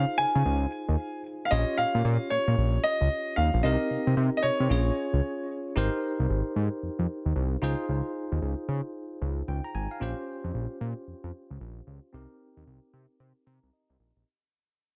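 Confident and slick, this new jack swing R&B cut from a longer piece moves at 113 BPM with a swung sixteenth-note feel in Bb dorian, with chords such as Dbmaj7, Bbm6 and Cm7 in a small room. A brilliant, polished concert grand piano carries the melody up front with tape echo until 5.5 seconds, over a bell-like, clean tine electric piano accompaniment and a fat, detuned sawtooth analog bass with a thick tone and a fast, decaying attack. From 5.8 seconds the music fades out as a filter sweep moves across the electric piano, which adds a closing fill at 13.2 seconds.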